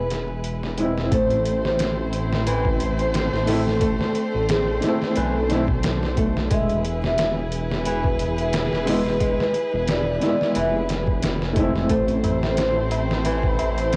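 Trip hop with a smoky, dark mood, set at 89 BPM in 4/4 with a light swing on the sixteenths, this excerpt sits in A harmonic minor and moves between E and Am chords. A pure, breathy sine lead carries the melody throughout, softened by phaser, analog chorus, cassette tape and tape echo, while a dark upright piano with audible action noise and a woody, short-sustained tone plays accompaniment through tremolo and tape echo. A rich studio violin section holds sustained, bowed chords with vibrato, roughened by vintage 12-bit sampler grit, and a deep, rumbling detuned saw bass with tube saturation sits up front. The sampler-style drum kit enters at 0.1 seconds with a thumpy kick, medium-tuned snare and hi-hat, sounding compressed, pitched down, muffled and overdriven in a small room. A fingerpicked nylon-string guitar, with finger squeak audible, plays arpeggios from 0.8 seconds under a filter sweep, and a high-tuned, close and dry tabla with a short ring slips in quietly in the background at 11.9 seconds. 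The whole piece has the intimate feel of a home recording on cassette in a small room.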